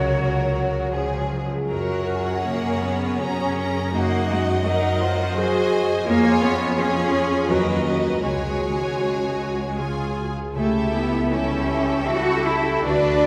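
In a rubato 3/4 at roughly 74-85 BPM, this slow romantic orchestral movement in F# major unfolds with a serene, tender mood, taken from a longer piece. A smooth, even violin section carries the melody from the background, while a second violin section adds an intense, clear counterline with vibrato that climbs as high as A#5. A small flute group offers an airy, tongued note with rolled-off highs only in the opening 1.3 seconds. Beneath them, a rich, distant viola section supplies accompaniment, a concert harp rings out fingerpicked arpeggios across its broad span, and a cello section with light vibrato joins a focused, close double bass section on the bass line. The harmony leans on C#sus4 and C# chords before settling on F# at 1.7 seconds, then passes through G#7/F# and C#/E# toward an A7/C# near the end. Everything sits in a wet church reverb with a long 3.3-second decay, giving the ensemble a spacious, resonant halo.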